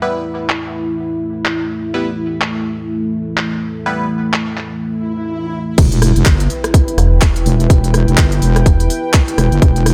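Bass house at 125 BPM in E minor, this gritty, aggressive excerpt from a longer piece rides a swung 16th-note feel in 4/4. A dark, moody analog pad holds sustained chords throughout, its detuned sawtooth body thickened by chorus and a sub octave, with a filter sweep shaping it across the opening 5.8 seconds while sidechain pumping makes it breathe. A nasal, band-passed chord stab cuts in from the start with phaser and tape echo before dropping out at 4.1 seconds, as a garage kit of crisp hats, handclaps, rim clicks and crash, tape-toned and filtered as if heard in a large room, settles underneath. A swell and sub drop build tension from 5.0 seconds into the drop at 5.8 seconds, where a tight electronic kick and a heavy, saturated wobble bass arrive up front on an E minor chord. A metallic FM bass with tube saturation adds a digital, decaying edge between 7.0 and 8.9 seconds, all under light reverb.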